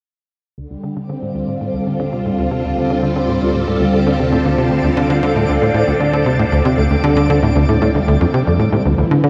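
A straight 4/4 pulse drives this hypnotic, cosmic slice of ambient, sequencer-driven space music, carried by a tight, punchy sequencer bass riff with a plucky, ring-modulated bite that sits up front and trails tape echo. A bright, warbling string machine holds sustained Dm7 chords from 0.6 seconds, swirling through ensemble chorus and phaser, while a resonant, evolving analog drone enters in the background at 2.0 seconds. A twinkling granular texture with octave-up shimmer sparkles in from 1.7 seconds, and the whole mix sits in an echo-heavy chamber reverb as the bass, drone and texture fade in.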